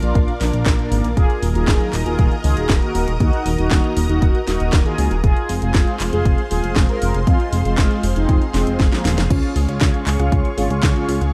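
Italo disco at 118 BPM, sunny and playful, where a round, brassy synth melody rides over mellow brass stabs, a lush, thick pad bathed in shimmer reverb, a glossy chorused bass, an overdriven house kit with cracking snare and bright hats, and a punchy up-front kick, with a drum fill at 8.5 seconds before a faint, warbling unison pluck arpeggio enters at 9.3 seconds in this dark, warm production.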